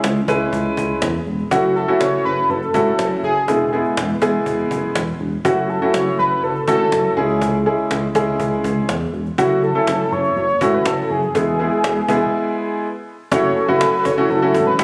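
A clear, up-front concert grand piano with deep bass carries the chords in this melancholic yet driving synth-pop excerpt, joined at 1.5 s by a bold, nasal octave-doubled lead with vibrato, chorus and tape echo. Beneath them, a glossy, retro chorused synth bass and a snappy acoustic cajon keep a straight pulse, all set in a lush hall reverb with small-room ambience and a compressed, phone-in-the-room sound. After a break at 12.3 s, a swirling, full-bodied phased analog pad enters in the background at 13.3 s as the music shifts into a new section.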